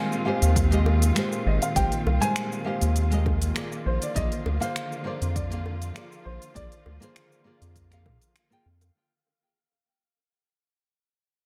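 Sunset chillout at 100 BPM in a relaxed, sunny mood, this nine-second excerpt from a longer piece fades out over Abmaj9 moving to Bb7 at 3.9 seconds, with a mellow, boxy grand piano melody and fingerpicked nylon-string guitar both carrying tape echo, veiled con sordino strings holding sustained chords, an airy wind-like noise texture in the background, smooth R&B kit with cabasa, finger snaps and hi-hat, a round, deep analog bass up front, a punchy overdriven electronic kick, and tight high-tuned bongos, all set in a light, echo-heavy small-room mix.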